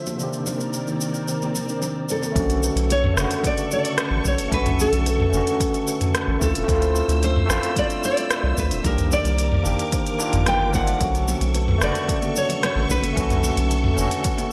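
Sunset chillout in a wistful mood, cut from a longer piece, where a gritty overdriven tine electric piano with fast tremolo and delay, a silky string machine with ensemble chorus, a woody kalimba with delay and a smooth R&B drum kit with gated reverb play throughout, while high-tuned background congas drop out at 2.3 seconds and return at 11.3 seconds, and from 2.4 seconds a punchy overdriven electronic kick and a round, deep analog bass join a full-bodied nylon-string guitar melody with delay, set in moderate plate reverb with a bright 1980s-style digital production.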